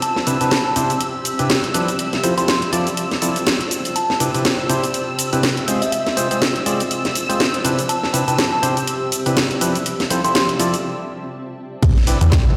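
Piano house cut from a longer piece, feel-good and joyful with a swung groove, where a glassy synth bell melody with chorus and tape echo rides over hollow, percussive organ stabs, shimmering vintage string-machine violin chords in the background, a cloudy, evolving granular pad and an up-front house kit with a cracking snare, cabasa, hi-hat and crash, all bathed in a lush hall reverb, until the bell falls away at 10.4 s and a break gives way at 11.8 s to a punchy electronic kick, a fat, detuned analog bass and a very quiet, gritty sampler-style kit with ride and snare.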